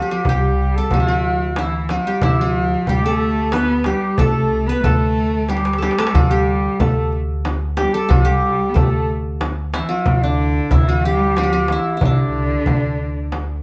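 In a 3/4 at 92 BPM with a straight feel, this festive, passionate Arabic maqam ensemble piece moves through maqam rast on D, cut from a longer performance. The qanun carries the melody up front, its triple strings plucked with fingerpicks for a bright-edged, acoustic sound. Alongside it, a breathy, whispered soprano saxophone with subtone and light vibrato plays a dark, intimate second line in a jazz style. A clear, focused bowed cello, slightly boxy, adds another second line an octave lower. A metal-shelled darbuka snaps crisply from 0.2 s, with a drum fill at 5.5 to 6.1 s, while a deep, large frame drum played with soft hands sits in the background. An up-front pizzicato upright bass with gut strings gives a woody, thumpy low end, and the band plays live together in one room, wrapped in a wet studio reverb.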